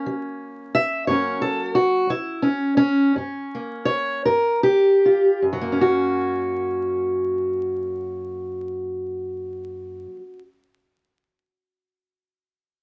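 Blues in 12/8 with a laid-back, swaggering mood, this short cut from a longer piece moves at a slow 50-61 BPM counted in dotted quarters, set in F# mixolydian. A lone fingerpicked steel-string acoustic guitar carries everything, sitting up front with a boxy, parlour character and ranging from F#2 to E5. Over the first 5.4 seconds the tempo slows down as the guitar plays solo, moving from F# to a Gm7 at 4.3 seconds before returning to F# as the second section begins at 5.4 seconds. The production is dark and warm, with moderate booth ambience giving a close, contained sense of space. A layer of vinyl crackle adds an aged, worn texture to the sound.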